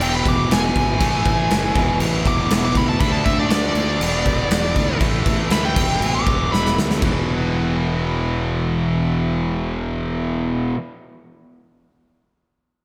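Hard rock with an anthemic, swaggering mood, this excerpt from a longer piece opens on a smooth overdriven lead guitar soloing between D5 and D6, its picked tone bright and touched with slapback echo. Beneath it, a cranked stack guitar with overdrive and slapback echo and two distorted electric guitars drive a low riff in the background, one of them double-tracked, compressed and very quiet. A fuzz-laden fingered electric bass adds a growly, amped low end, while a brassy analog pad with chorus and a soft attack sustains chords, barely audible. An up-front acoustic drum kit with punchy kick, medium-tuned snare and bright crash cymbals plays a fill from 6.5 to 7.0 seconds and stops at 7.1 seconds, just after the solo ends at 6.8 seconds. From there the riffing guitars, bass and pad carry on, all set in a lush hall reverb that gives a big arena sound.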